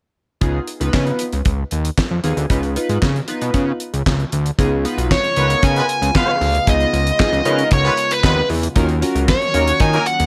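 A small room with light reverb frames this short cut from a longer early-eighties boogie funk groove at 115 BPM in a straight 4/4, its late-night mood built for dancing over a Db7 chord that moves to Ebm7 near 8.8 seconds. Up front, a damped 70s acoustic kit sounds dry and dark, with a fat snare, tight kick, hi-hat and handclaps, a rolled-off top and a gated reverb tail. A thick, saturated analog bass with detuned sawtooth tone and a filter sweep sits equally forward, while a chorused polysynth supplies glossy, full-bodied, evolving pulse-wave chords. At 4.6 seconds a very quiet, shimmering pad enters, mellow and ring-modulated with a moving notch and slow attack. At 5.1 seconds a nasal, overdriven electric lead guitar with a parked wah takes the melody, followed shortly by a punchy, distant horn section with light vibrato and octave doubling playing a tight second line.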